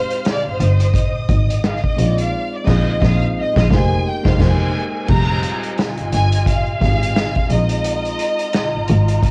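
A clear, focused violin section carries the melody in this lush, smooth excerpt of 1970s-style soul, bowed with vibrato and a silky, rounded top, and it stands out as a solo voice through the first 5.1 seconds. Set in F dorian at 87 BPM in 4/4 with a gentle sixteenth-note swing, the music moves through Fm7, Bb9sus4 and Fm11 chords. Behind the violins, a dark, woody string section plays a distant second line, while a mellow concert grand piano with a deep, boxy low end supplies the accompaniment. A vintage acoustic drum kit enters at 0.1 seconds with a punchy kick, a medium-tuned snare, hi-hat and dark crash cymbals, sitting up front in a small, pumping room with a rolled-off, tape-coloured top. From 0.5 seconds a bowed double bass, dark and expressive with vibrato and portamento, anchors the low register with a touch of transformer saturation, and a band accent from 2.3 to 5.1 seconds leads into the second section, all heard through studio reverb on a home cassette recording.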